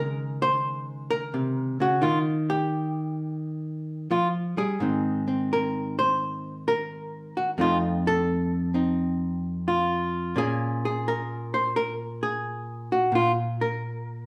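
Smoky and swinging, this solo jazz excerpt in Bb minor moves at 86 BPM in 4/4 with a firm swing on the eighths. A miked and amplified archtop guitar plays alone throughout its 14.3 seconds, its clean, dark, hollow-body tone picked and up front, ranging from F2 to C5 over chords that pass from Dbsus2 through Ebadd9, Abadd9 and F7 to settle on Bbm7 at 10.3 seconds. The studio reverb is wet, and the instrument is heard from further back in the room.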